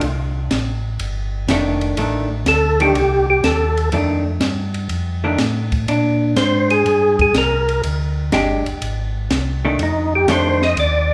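A swinging 4/4 groove at 123 BPM opens this bluesy soul jazz organ trio excerpt in F mixolydian, with a compact cocktail kit of hi-hat, ride, punchy kick and high-tuned snare under a dark, rolled-off top, and a mellow, round tonewheel organ bass line with key click and slow rotary speaker. A clean, picked hollow-body jazz guitar enters at 1.5 s with compressed accompaniment over F13 and Bb13. At 2.5 s a lightly overdriven, percussive tonewheel organ lead steps up front with third harmonic percussion, chorus vibrato and a stopped rotary speaker, all carried in a wet recital hall reverb.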